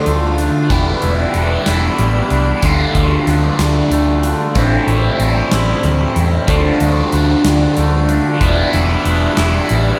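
A steady 6/8 pulse from a huge arena drum kit, with punchy kick, medium-tuned snare and hi-hat, carries this brooding, cinematic post-rock fragment, where a raw, overdriven garage guitar riff with phaser and a round, dark, hollow-body fingered bass sit up front while a clean, twangy electric guitar and a ringing vibraphone with fast motor vibrato trace delayed arpeggios in the background alongside an icy, crystalline pad, the whole mix soaked in dreamy, cavernous reverb.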